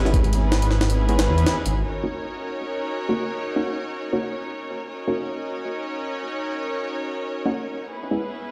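Drum and bass with a jungle edge, this frenetic yet atmospheric excerpt runs at 158 BPM in Eb phrygian, with a slight swing on the sixteenths. A deep, rumbling detuned saw bass sounds from the very start, joined a moment later by a gritty, pitched-up sampler-style drum kit up front, a thumpy kick and high-tuned snare with hi-hat. Both play only until 1.8 seconds, with the kick dropping out from 1.1 seconds. Beneath them, a dark studio string section holds soft-attacked, floating sul tasto chords throughout, moving from Dbm7 to Ebm7 at 1.8 seconds and back to Dbm7 near the close. Mellow chord stabs, evolving through a filter sweep and coloured by chorus and dub echo, decay against the strings until 5.1 seconds and return briefly near the end. The whole piece sits in a large, bare-room sound, as if played over a big sound system, with a moderate studio reverb adding depth.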